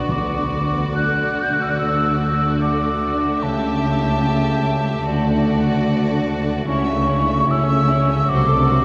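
A mellow, hollow silver flute sits up front in this serene, lyrical slow romantic orchestral movement, singing a second line high above muted symphonic violins that carry the veiled, lush melody at a rubato 73 BPM in 4/4. Distant muted chamber violins add another line while muted violas, cellos and double basses, all dark and con sordino with vibrato, fill out the accompaniment and bass alongside a ringing, fingerpicked harp playing arpeggios in the background. A very quiet, round timpani played with soft mallets sounds from 0.1 to 1.3 seconds, and a cathedral reverb bathes the passage as the harmony moves between D and A.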